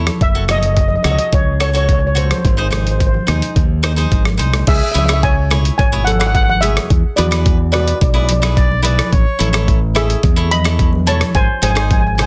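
Dense, heavily limited and lightly reverberant, this short cut from a longer calypso at 108 BPM in C# minor carries a bittersweet, cool mood, led by a shimmering, mellow steel pan played with soft rubber sticks and colored by tape echo. A bright, direct fingered electric bass and a gritty, sampler-style boom bap kit with a thumpy kick and soft-clipped snare sit up front, while a crisp, picked cavaquinho plays chords and ringing congas played with soft hands sit distant in a large room; a drum fill arrives at 4.0 seconds. A roomy, classical-style trumpet with light vibrato adds a brief solo line from 8.6 to 9.8 seconds over chords moving from F#m through C#m, E7 and A.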